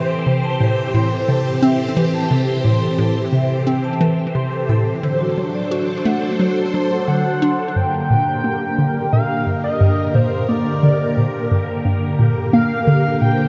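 Mysterious and expansive, this ambient, sequencer-driven space music unfolds at a steady, straight pulse in a vast, echoing cathedral-like space, cut from a longer piece. A bouncy, hollow square pluck sits up front with a repeating riff through the delay and chorus, while a swirling, vintage string machine holds sustained chords, its ensemble chorus and phaser giving it a bright, evolving sheen. A ringing, metallic vibraphone with medium mallets spins arpeggios over the opening, dropping out at 7.5 s, as the harmony moves from A minor to D7. Just before the music settles on G minor at 7.8 s, a shimmering, warbling pulse-width lead enters with a melody, and a filter sweep moves across the synth arpeggio sound from there on. Near the close, a very quiet, breathy, wind-like noise texture drifts in at 11.2 s, adding a dark, airy haze to the final bars.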